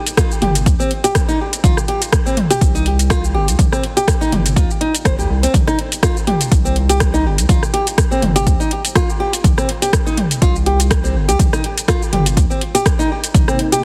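Driving and warm, this swung afro house passage, cut from a longer piece, rides on a punchy, overdriven electronic kick and an up-front deep house drum kit of metallic hi-hats, rim click, shaker and toms, while a small, fingerpicked nylon-string guitar plays arpeggios with delay, a round, deep analog bass pumps beneath, and a smooth, detuned analog pad with chorus arrives only at 13.3 s, all set in light reverb and a heavily compressed, radio-like sound.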